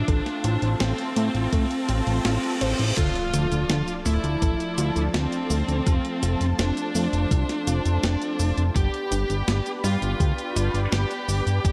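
A fat, saturated analog bass sits up front beneath a dark, high-gain lead guitar carrying the melody through distortion and digital delay, in this moody, nostalgic synthwave excerpt at 83 BPM. A silky string pad with ensemble chorus and sidechain pumping, a warbling, lo-fi pluck playing arpeggios with a filter sweep over the opening 3.0 seconds, round chorused brass stabs, a thumpy electronic kick and a tape-toned 12-bit drum machine with cabasa, hi-hat, snare and crash fill out the track, while a riser and reverse cymbal lead into an impact at 3.0 seconds. From that point an airy, dreamy second lead with chorus, phaser and delay joins in the background as the chords move from Dm through F to G, all in a dark production with light reverb.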